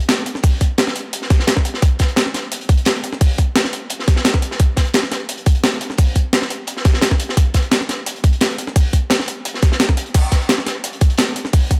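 Uplifting and warm, this drum and bass passage, cut from a longer piece, drives at 173 BPM in a straight 4/4, built from three layered drum parts. A crunchy, saturated breakbeat kit with a high-tuned snare and rolled-off top opens at 0.0 seconds. It is joined at 0.1 seconds by an overdriven, sampler-style break with crash, hi-hat and a gritty medium-tuned snare that sounds re-recorded in a small room, and at 0.4 seconds by a tight, up-front electronic kick that dominates the mix under a light reverb.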